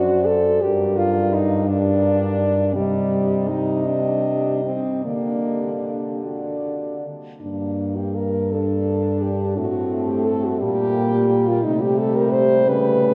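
A dark-toned French horn carries the melody in this elegiac, solemn classical excerpt for horn quartet in G minor, moving in a slow, rubato 6/8 at about 49-59 BPM. Three mellow horns play beneath it: a distant second line with light vibrato, an up-front accompaniment with a vintage vibrato, and a bass line with a smooth top. The quartet sounds as if heard from further back in a cathedral, its long reverb of 6.8 seconds surrounding the harmony as it moves from G minor through C minor to D and later passes through Gm/Bb to an open C chord.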